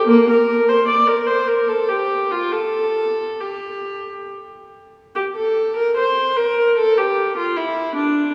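In a rubato 3/4 that drifts between 67 and 78 BPM, this grave, flowing fragment of a baroque-style suite movement in G minor features one unaccompanied bowed viola with a reedy gut-string tone, light vibrato and period-style playing, played from Bb3 to D5 and heard from further back in a wet church reverb that lingers for 3.5 seconds, with a new section beginning at 5.2 seconds before the clip ends at 8.3 seconds.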